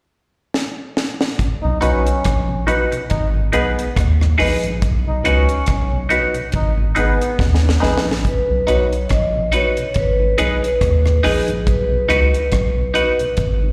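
A roots reggae groove at 70 BPM in 4/4, with swung sixteenths, opens on a dry, up-front drum kit whose high-tuned snare, tight kick, rim click and hi-hat roll through a fill before the band arrives at 1.6 seconds. A round, deep sub bass sits up front beneath a mellow tonewheel organ with key click and a slow rotary speaker in the background. Above them, a twangy, compressed clean electric guitar with phaser and a woody, slightly detuned upright piano playing stabs trace the B major harmony as it moves between B and G#m. A distant, roomy trombone carries a punchy second line with light vibrato and dub echo until 7.8 seconds. After another drum fill, a close-miked vibraphone with medium mallets takes the melody at 8.3 seconds, its metallic, ringing tone full, and the sunny, warm excerpt sounds like a live gig heard through the venue's PA with light recital-hall reverb.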